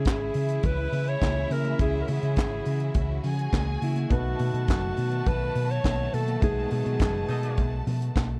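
Disco at 104 BPM in C# minor, sultry and glamorous, where a mellow yet forceful alto saxophone carries the melody with light vibrato over a rich violin line, a background grand piano with audible action noise, clear lush sustained strings, a round, dark hollow-body fingered bass and a tight, up-front funk drum kit with handclaps and a high-tuned snare, while ringing congas sit behind and a punchy vintage horn section stabs briefly at 7.3 seconds during a band accent, all in a dark, dry production moving from C#m to B7.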